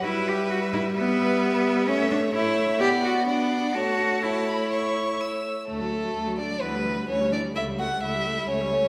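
A rich, up-front cello anchors this lively, cheerful classical-period string quartet movement at 129 BPM, its bowed bass line sitting close beneath a focused first violin that carries the vibrato-laden melody up to E6 while the second violin adds its own line. A smooth, even viola fills out the accompaniment in its low register, and the whole quartet plays throughout this short cut from a longer piece, moving from Em/G through A and Bm before shifting to D at 5.7 seconds and closing on A7/C#. A wet scoring-stage reverb places the ensemble further back in the room.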